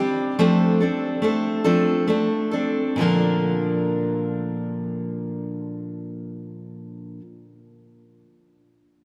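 Folk piece in a lilting 6/8 with a warm, hopeful mood, carried by a single picked steel-string acoustic guitar whose bright dreadnought tone sits up front from 0.0 to 7.2 seconds. The playing eases back over the opening 3.0 seconds, moving from an F6 chord to a settled Bb as the second passage begins. A vast cathedral reverb surrounds the guitar with a long, echoing tail, and the short clip is cut from a longer performance.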